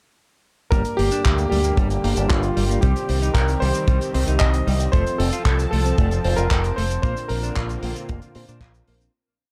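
A punchy, up-front fingered electric bass with an envelope filter drives this short, playful Italo disco piece in Bb major at 114 BPM, pushing steady eighth notes under a four-on-the-floor acoustic kick in a straight 4/4. A tight funk drum kit fills out the disco machine beat with cabasa, handclaps and closed and open hi-hat, both drum parts polished and airy in a small room. On top, a vintage electric grand piano with a clangy low end plays a motif-based melody through delay, while a dark, clean electric guitar runs an eight-step arpeggiated sequence, also with delay, in the background. A glossy chorused polysynth adds held chords with syncopated pushes and a filter sweep, and a smooth, warbling analog pad with detuned sawtooth, chorus and a touch of 12-bit sampler grit enters at 1.1 seconds to hold sustained chords. The piece moves through Gm, Cm and F before landing on Bbadd9, fading out from 6.3 seconds to its close at 9.1 seconds in a dark, warm studio production.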